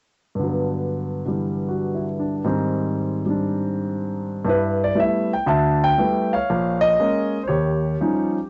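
A concert grand piano with a deep bass and an up-front, warm presence plays solo jazz from 0.4 to 8.5 s in this playful fragment of a longer piece, swinging loosely with rubato at about 119 BPM over chords from Gmaj7 and Abmaj7 through G69 to Bbm7 and Eb9, all heard in a small booth on a dull-topped home cassette recording.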